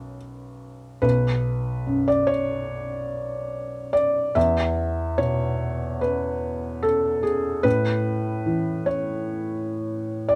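A felt-muted upright piano plays alone in this melancholic, intimate neoclassical minimalist fragment in B minor at a rubato 73 BPM, its soft, boxy tone sitting up front under close, detailed microphones with light reverb and audible action noise, moving through B5, E5 and A chords across a range from B1 to E5 before the cut at 10.4 seconds.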